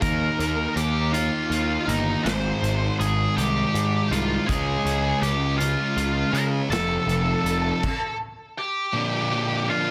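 Cathartic, restless quiet-loud alternative rock in a half-time 6/8 feel at 54 BPM, this cut opens with a dark octave-fuzz lead guitar carrying the melody over a thick, up-front fuzz guitar riff, a very quiet sludgy distorted guitar, a growly fuzz picked electric bass and a loose indie drum kit with a pumping small-room sound, moving through Eb, Ab6, Db and F until the bass, sludgy guitar and drums drop away around 7.8 seconds and the two fuzz guitars ring on to 9.9 seconds.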